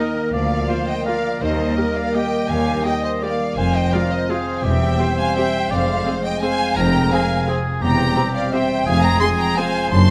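Close, detailed sound on a moderately reverberant scoring stage frames this festive, sweeping orchestral ballroom waltz at 169 BPM in 3/4, its rubato beats carried by a dark, expressive violin section on the melody over second lines from an airy flute section, a lush violin section and a solo oboe, with a smooth viola section accompanying until 9.6 s, mellow French horn chords, very quiet ringing harp arpeggios, and focused cellos and smooth double basses entering at 0.3 s on the bass as the harmony moves from Bb/D and Eb toward F minor.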